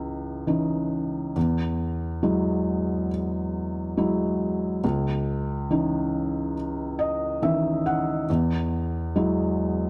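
A felt-muted upright piano plays alone from the first moment, its soft, mellow tone sitting up front with audible action noise and a vintage character, spanning C#2 to F#5. This short folk excerpt moves at an unhurried pace in a straight 4/4, alternating between C#madd9 and Eadd9 chords in a nostalgic, intimate mood. Close, detailed microphones capture the instrument within a moderate scoring-stage reverb.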